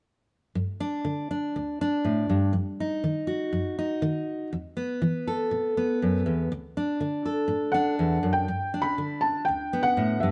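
A fingerpicked steel-string dreadnought guitar opens this nostalgic, uplifting folk excerpt in G major at 121 BPM, carrying the accompaniment alone until a mellow, intimate felt-muted upright piano enters up front at 7.7 s with a soft, short-sustained vintage melody, both set in a moderate echo chamber reverb within a dark, warm production.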